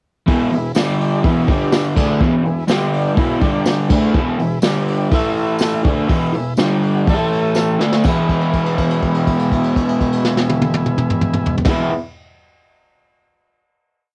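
A crunchy, double-tracked overdriven electric guitar drives a swaggering power-chord riff up front in this rowdy garage rock piece at 123 BPM in E mixolydian, backed by a punchy brush drum kit with a rolled-off top, a buzzy combo organ with heavy vibrato and a jingly tambourine in the background, all through light reverb and cassette-tape grit, until a drum fill at 7.6 seconds leads into a final held chord from 8.1 seconds.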